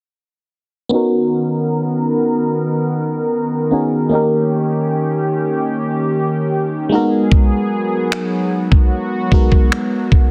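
A dense, heavily limited mix with light digital reverb frames this romantic, dreamy contemporary R&B fragment at 75 BPM in B major, where a glassy, bell-like FM electric piano with chorus and phaser and a shimmering, detuned retro pulse-width pad with sidechain pumping carry a filter sweep over Bmaj7, D#7 and G#m7 that continues as a gritty sampler-style drum kit of finger snaps and thumpy kick arrives at 7.3 seconds.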